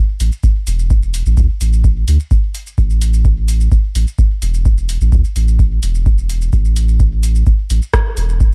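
A soft, round dub sub bass and a layered deep house kit of hi-hat, rim click and shaker open at 0.2 s, with the sub moving between E1 and D2 under sidechain pumping, before a deep, analog electronic kick lands up front at 0.4 s. This nocturnal, hazy dub techno cut runs at 128 BPM in a straight 4/4, the percussion sitting low and tape-warm as if re-recorded in a small room while the triangle-and-square sub sustains beneath. The production is dark and dry, with little reverb and a faint mains hum, in a short excerpt taken from a longer piece.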